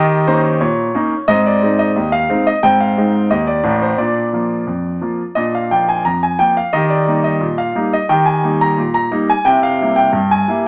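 A clear concert grand piano carries this short ragtime excerpt alone, playing for its full 10.7 seconds in a playful, jaunty mood. Set in Eb major at 88 BPM in a straight 2/4, the music moves through a progression that opens on Eb7, settles on Ab at 1.3 seconds, and passes through Bb and Eb before landing on C7 at 9.5 seconds. The piano spans from A1 up to Bb5, pairing a deep bass with a natural, up-front tone. A moderate large studio reverb lends the instrument a sense of space while keeping it close to the listener. The passage is cut from a longer piece, so it ends on that C7 chord, poised to continue.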